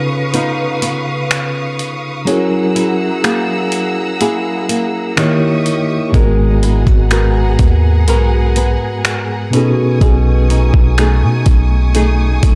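A gritty, sampler-style drum kit sits up front in this late-night contemporary R&B excerpt, its compressed finger snaps, hi-hat and thumpy kick carrying the feel of having been re-recorded in a large room, and it comes in at 0.3 seconds. At a slow 62 BPM in 4/4 with a straight feel, the piece moves in G# minor through lush extended chords such as C#9, F#9 and D#7b9 during an opening break. A mellow tine electric piano heard through its built-in speakers provides clean accompaniment, while a fingerpicked acoustic flamenco guitar plays arpeggios colored by digital delay. Behind them, a distant, focused studio string section holds bowed chords with vibrato and a sidechain pumping effect. At 6.1 seconds a deep, boomy 808-style sine bass arrives up front with a fast attack and decaying notes as the harmony settles onto G#m9 and then B13, all set in a dark production with light reverb and digital ambience that heightens the longing mood.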